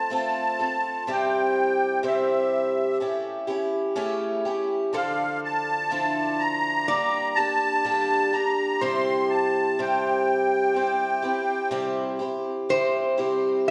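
Intimate and reflective, this acoustic folk piece for a small group is cut from a longer work and moves in a straight 4/4. A reedy, dark musette accordion carries the melody up front, its smooth, shimmering voice sitting high, while a picked twelve-string acoustic guitar supplies a boxy, octave-doubled accompaniment with audible finger squeak. From 4.9 seconds a quieter metal-body resonator slide guitar adds a second line, bright and nasal, played with fingerpicks for a metallic edge. The accordion stops at 11.7 seconds, and at 12.7 seconds the resonator takes a brief solo with a steel bar over the twelve-string as a new section begins. The harmony passes through F/A, C, A7, Dmadd9 and Gm before returning to C, all bathed in a wet, lingering reverb that suggests a church or concert hall.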